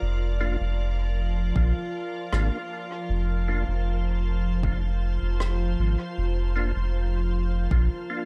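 Meditative and spacious, this short ambient dub excerpt moves at 78 BPM in a straight 4/4, resting on a single Bb/F chord throughout its 8.3 seconds. A soft, organ-like additive pad holds sustained chords from the start, its pure, detuned unison tone brightened by ensemble chorus and its own reverb, with a faint grain of vintage 12-bit sampler grit. Beneath it, a round sine sub bass sits up front with tube saturation, while a glassy texture of drifting overtones hovers quietly above, softened by chorus and reverb. From 0.4 seconds a mellow, percussive tonewheel organ adds stabs with key click and third-harmonic percussion, spun through a fast rotary speaker with chorus vibrato and thrown into dub echo. An overdriven electronic kick enters at 1.6 seconds, very quiet and roomy, and a distant acoustic rim click, also sent into dub echo, taps between 2.3 and 5.6 seconds, all set in an echo-heavy digital ambience.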